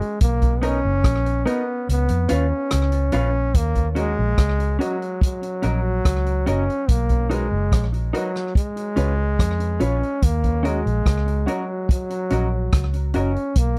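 A straight 4/4 roots reggae groove at 72 BPM rides on a tight, natural-sounding vintage drum kit of kick, hi-hat and rim click, with the kick dropping out from 1.9 to 3.5 s, while a round, foam-muted fingered electric bass with tube saturation sits up front. In Eb minor, a dark, clean electric guitar with tape echo and a woody upright piano playing stabs fill out the accompaniment, moving through Bmaj7, Db7 and Ebm7. A clear solo trombone carries the melody with tape echo, and the dry, close 1970s-style studio sound frames this laid-back, serious cut from a longer piece.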